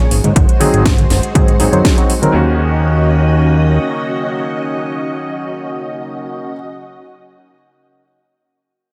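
The fat analog bass anchors this short nu-disco excerpt, a thick, saturated sawtooth tone pushed up front and pumping against the beat until it drops out at 3.8 seconds. Around it sits a sensual, sleek groove at 121 BPM in Eb dorian, moving from Ab7 to Ebm7 as the first section gives way to the second at 2.3 seconds. A punchy, overdriven electronic kick and a house kit with a cracking snare and metallic hats drive the opening, joined by soft-handed congas set back in the mix. The kick falls away at 2.0 seconds, and the rest of the percussion follows at 2.3 seconds. A lush string machine holds slow-blooming chords with ensemble chorus and sidechain pumping throughout. A clangy electric grand piano carries the accompaniment from 0.6 seconds, passing through a low-pass filter sweep in the opening section and trailing digital delay, all under a light reverb.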